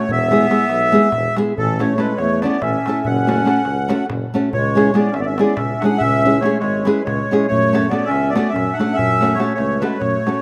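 Balkan folk in a fiery, bittersweet wedding-band style at 283 BPM (eighths) in 7/8 and F# minor, where a reedy, sweet accordion with light tremolo tuning carries the melody up front, a mellow, distant clarinet adds a soft-attack second line, a fingerpicked nylon-string guitar with audible finger squeak accompanies, a tuba with light vibrato holds the bass, and a clay-shell darbuka played with soft hands sounds compressed and saturated, all in a lush hall reverb with a rough home-demo feel, on this fragment cut from a longer piece.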